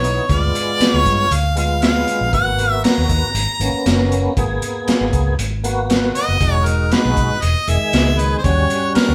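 Mournful and smoky, this 9.1-second excerpt of straight-eighth soul blues in G# minor at 118 BPM sets an up-front, clear harmonica melody with light vibrato and overdrive over a full tonewheel organ through slow rotary speaker and chorus vibrato, a round, foam-muted vintage electric bass, and a gritty, rolled-off breakbeat kit of hi-hat, punchy kick and snare, all playing live in one room with moderate reverb through chords moving from Ddim7 to G#m9, Emaj7 and D#7#9.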